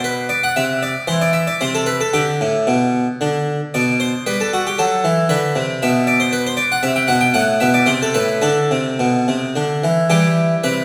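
A baroque-style classical suite movement for solo harpsichord, this short passage cut from a longer piece has a radiant, flowing mood in G major and 3/4 time. The tempo moves between 105 and 119 BPM with a rubato feel, giving the dance a supple lift. The Flemish-style harpsichord sits up front, close-miked and full, its plucked tone brilliant and thickened by octave strings as it ranges from A2 to G5. Chords pass from B minor and C through G and an A minor thirteenth before settling toward a D5 and arriving on E minor at 10.1 seconds. A recital hall's reverb, with a 1.5-second decay, surrounds the instrument and lends the plucked attack a sense of space.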